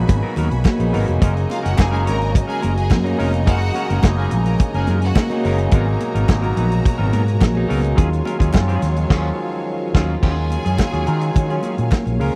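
Disco at a sultry, danceable groove, this dry, close 1970s-style excerpt sets a tight, mid-forward soul drum kit and an amped, overdriven fingered bass up front beneath a barky electric piano with overdrive and phaser, clean picked semi-hollow guitar, distant high-tuned congas, crisp handclaps and lush background strings holding Abm9 to Gb69 and Ebm11 chords, while a bright, intense string line sings from 1.5 to 5.4 seconds and returns at 10.2 seconds after a band accent.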